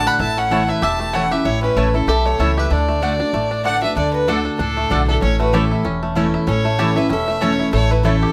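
Bluegrass at a brisk 191 BPM in D major, this lively, rustic excerpt swings its eighth notes as a dark, woody fiddle carries the melody up front, bowed sul tasto with light vibrato and portamento, while a bright, nasal lap resonator guitar played with slide and fingerpicks adds a metallic second line in the background. A full-bodied dreadnought acoustic guitar picks the accompaniment, a twangy banjo plays percussive arpeggios, a thumpy pizzicato upright bass anchors the low end, and a mandolin enters at 0.5 seconds with double-string stabs. The harmony moves from A to D and back to A across two matching passages, all set in moderate studio reverb.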